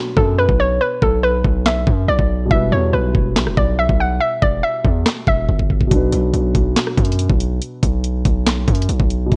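Menacing and hard-hitting, this half-time trap and hip hop cut from a longer piece moves at 141 BPM in B minor, shifting between Bm and Em. A dark, mellow concert grand piano plays low-passed accompaniment throughout, while a hollow, bouncy square-wave pluck with chorus carries the melody until 5.9 s. A distorted, saturated 808-style bass and a tape-warm, up-front trap kit of knocking kick, sharp snare, bright hats, rim clicks and handclaps drive the beat, with a drum fill at 5.5 s. The whole recording sounds worn, like a warbling old cassette tape with pitch drift.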